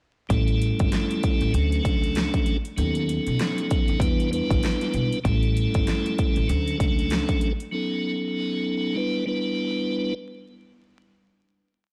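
A blown-out, overdriven recording with vinyl crackle and digital ambience frames this tough, moody boom-bap hip-hop piece at 97 BPM in E dorian, swung on the sixteenths. Up front, a piping, scooped tonewheel organ with key click and a slow rotary speaker plays chopped chords, repeated like a sampled loop through A7, Dmaj7, B9 and Em7, with cassette-tape colour and filtering. Beneath it, a woody, thumpy pizzicato upright bass with transformer saturation plays a deep looped line until 7.2 seconds, while a big-room dance kit, with a punchy kick, huge snare and metallic sixteenth-note hats, lays back until 7.7 seconds, leaving the organ alone until 10.1 seconds.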